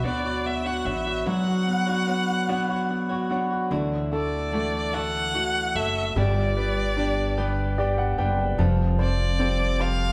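Romantic and swaying, this slow six-eight pop ballad in D major at 49 BPM sets a rich, expressive bowed violin melody with vibrato and portamento over an intimate concert grand piano with long sustain and audible action noise that adds a fill from 7.4 to 8.6 seconds, while a clean, scooped, direct-recorded electric guitar picks arpeggios through digital delay and a woody, growly pizzicato upright bass anchors the low end, all played live together in a stone room with lingering reverb.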